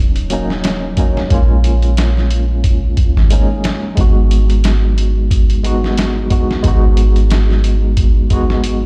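A deep, round 808-style bass sits up front in this dark, smoky trip hop fragment, its soft sine tone striking quickly and then decaying beneath the whole 8.9 seconds. A boom bap sampler-style kit enters at 0.2 s with a thumpy kick, a medium-tuned snare and hi-hat, sounding pitched down, compressed and gritty, with a tape-warmed character from being re-recorded in a small room. Further back, a worn tine electric piano plays the accompaniment, slightly out of tune yet clean, heard through its built-in speakers with tremolo and tape echo. The chords move from D#m7 to A#m7 at 1.3 s and on to G#m7, over a swung sixteenth-note feel in 4/4. The mix carries a digital ambience, like a big sound system in a bare room, with large studio reverb around it, and the passage is cut from a longer piece.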